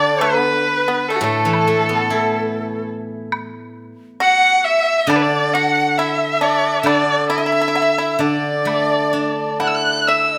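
A clear, up-front bowed erhu carries the melody with vibrato and portamento through this festive, graceful Chinese chamber piece in a free rubato feel, while a breathy bamboo dizi with a buzzing membrane and a dry, percussive fingerpicked pipa trace second lines, a silvery, ringing steel-string zither provides accompaniment, and a woodblock ticks in the background from 1.5 seconds, all set in a moderate recital hall reverb in this short cut from a longer piece.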